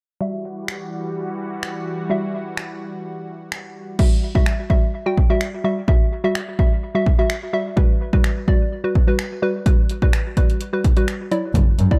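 A hollow, warbling square-wave pluck and a lush, detuned sawtooth pad open this summery, upbeat dance-pop excerpt at 127 BPM in straight 4/4. Both carry chorus, sidechain pumping and a low-pass filter, with a filter sweep running through the first 4.0 seconds. A punchy analog drum machine joins at 0.7 seconds with kick, hi-hat, finger snaps and crash cymbal, its tape-toned kick sitting up front with a small-room character. The pad's sustained chords stop at 4.0 seconds, and from there the bouncy pluck carries the accompaniment over the drums, its dub echo feeding a dry, echo-heavy mix. The harmony moves from Emadd9 to Gmaj7 and then Dadd9/F#, and in the final moments a focused, bowed double bass with vibrato appears briefly, shaped by sidechain pumping.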